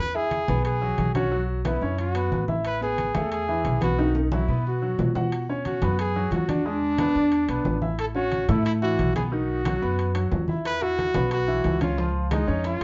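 Salsa with a sunny, joyful character, this excerpt from a longer piece moves at a brisk clip as a small band plays together in one room with a wet studio ambience. Up front, a warm, close-miked trumpet carries the melody in a pop-style solo with light vibrato, while a woody, thumpy upright bass with gut strings plays pizzicato underneath. A bright grand piano with a brilliant, intimate tone and audible action noise supplies the accompaniment, moving through colorful suspended and added-tone chords before landing on C# at the close. Low-tuned, ringing congas miked close and ringing metal-shell timbales, close and dry, drive the percussion, and a drum fill arrives at 4.0 seconds. Tight, high-tuned bongos played with soft hands slip in very quietly at 10.7 seconds, and the overall sound is rounded, with the top end rolled off.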